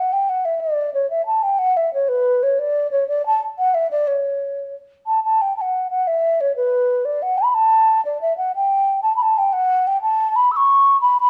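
Bright and rollicking, this short Celtic folk cut in a straight 6/8 features a lone wooden flute, mellow and hollow with an airy breath, soft attack and gentle vibrato, placed up front in a large studio reverb as it moves from its opening phrase into a second strain at 5.1 seconds.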